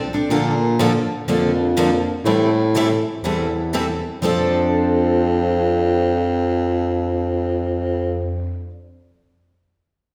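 A breathy baritone saxophone carries the bass line up front, mellow and whispered with a light vibrato and soft attack, in a charming, lively stretch of acoustic string swing in F major at 123 BPM. Two bright, picked steel-string acoustic guitars supply the accompaniment, one with audible finger squeak and the other boxy with a parlour character, moving through Bbmaj7 and Am7 before settling on F6 around 4.2 seconds. A recital-hall reverb gives the church-like room a wet, resonant bloom across this short excerpt from a longer piece.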